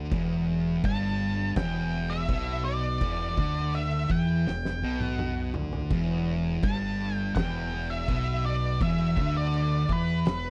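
Hypnotic and heavy, this slow stoner and doom metal passage in E minor moves at 83 BPM in a straight 4/4, cut from a longer piece and resting on a single E minor chord throughout. Two thick fuzz guitars drive the riff from the start, one dark and set in the background, the other warmer, both picked and distorted. A growling fingered electric bass sits beneath them, overdriven with tube saturation for a warm, amp-fed low end. The oversized low-tuned drum kit brings a fat snare, punchy kick, toms and crash cymbal with a saturated, smooth character in a bright stone room, and a drum fill arrives between 4.5 and 5.9 seconds. An octave-fuzz lead guitar enters at 0.9 seconds with a dark, picked melody high above the riff, its distortion trailed by a slapback echo. The sound is dry and close in a 1970s studio manner, touched with light reverb.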